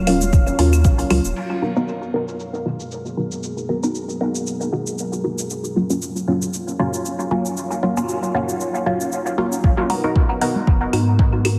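A deep, moody pad of detuned sawtooth voices opens this hazy, hypnotic dub techno excerpt in G# minor at 116 BPM. Its slow-attack chords are softened by chorus and pump against the sidechain, and a round sine sub bass joins from the start. Almost at once a muted, up-front chord stab arrives, phased and trailed by dub echo. Behind it, a deep house kit of cabasa, metallic hats and crash sits low under low-pass filtering and studio reverb, while a layered, tape-warm kick and background claves and congas fill out the opening seconds. By 1.4 s the kick, bass and hand percussion have dropped away, and filter sweeps move through the stab and pad, the harmony shifting between G#m9 and D#m9 over a lightly swung 4/4. At 9.6 s the kick and sub bass return, with claves and congas rejoining shortly after, and a lush hall reverb and heavily compressed, radio-like sound lend the mix a cloudy, distant sheen.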